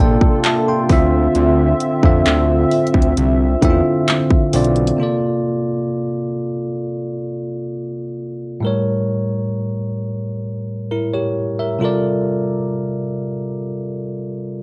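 Contemporary R&B at a slow 66 BPM in straight 4/4, moody and full of longing, taken from a longer piece. In the opening five seconds, a fat, sawtooth analog bass with a filter sweep sits up front beneath a hollow, flute-like pad treated with chorus, while a trap kit of hard-clipped kick, bright hats and handclaps enters at 0.2 s with an overdriven edge. The bell-like tine electric piano carries the accompaniment throughout, its clean, direct tone coloured by cassette tape and plate reverb. The pad, bass and drums fall away at about 5.0 s, leaving the electric piano alone through the rest of the passage until 14.6 s. The harmony moves through C13sus4 and Dm9 before the second section turns to A7b9 and returns to C13sus4. A home cassette recording in a moderate room lends the whole a lo-fi intimacy.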